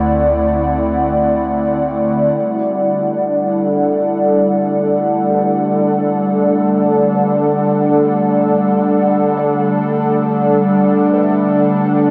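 An airy, breathy pad with chorus sits up front in this serene, peaceful ambient passage in free time, holding sustained chords that move from D9 to Gmaj7 at 2.4 seconds, while a very quiet felt-muted upright piano traces intimate arpeggios with audible action noise, a round, deep analog bass with tube saturation sounds only until 2.3 seconds, and an evolving pulse-wave drone hums in the background, all bathed in a wet cathedral reverb and the worn, warbling pitch drift of old cassette tape.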